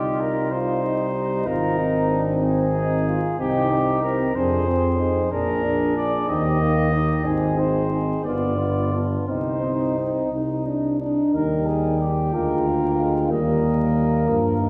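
All five brass voices of this classical quintet sound together from the opening moment: a mellow, punchy trumpet carries the melody while a flugelhorn with light vibrato sings a second line just beneath it. A present French horn with a warm tone and a clear trombone, set back in the background, fill in the accompaniment, and an up-front tuba anchors the bass. The mood is grave and solemn, unfolding in a slow, rubato 6/8 at roughly 57-64 BPM counted in dotted quarters, with harmony rooted in C minor that brightens into Eb major at 11.3 seconds. Most of the players sound distant and roomy, heard from further back in a concert hall with a lingering reverb, and a faint vinyl crackle adds an aged patina. The passage is cut from a longer piece, and all five parts play through to its close at 14.7 seconds.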